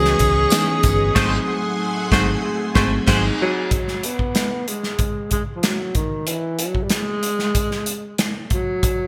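A straight 4/4 groove from a punchy, up-front studio drum kit drives this short cut from a polished 1980s jazz-funk pop track, with kick, snare, hi-hat and crash cymbal wrapped in gated reverb. The mood is urban and bittersweet, built over a C#m9 chord that moves to G#7b9 and G#7. A round, foam-muted electric bass sits low under a sparkling FM electric piano with a lush chorus and a full sawtooth string machine holding soft, sustained chords, while a very quiet, jingly tambourine shimmers briefly near the start. A clear, jazz-style horn section with delay adds a second line from 1.2 s as the band hits an accent. The bass drops out around 3.3 s, and the keyboards fall away at 3.7 s. Throughout, the breathy, whispered alto saxophone, intimate and up front with light vibrato and delay, carries the melody, continuing over the drums alone after 3.7 s. The production is bright and digital in the 1980s manner, finished with light studio reverb.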